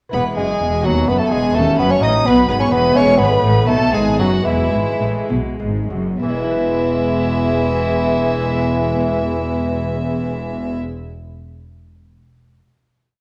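A brilliant, lively baroque-style concerto movement in E major and 6/8 opens at once with a clear bassoon singing the tune up front, doubled at the octave by a rich chamber violin section, while a second violin section carries the melody above with light vibrato and a smooth, reedy period gut-string tone. Beneath them a dark viola section sits distant in the background, weaving independent inner lines and sustained chords in the rhythm of the tune, as a delicate fingerpicked lute rolls chords on its double strings. The bass is carried by a warm, close cello section playing a walking line, doubled by a double bass section. The ritornello moves at 62-86 BPM in dotted quarters, slowing from 2.3 to 6.2 seconds before settling onto a long final chord that the lute holds until 11.1 seconds. The ensemble rings in a wet recital hall and comes through a worn, warbling old cassette tape whose pitch drifts.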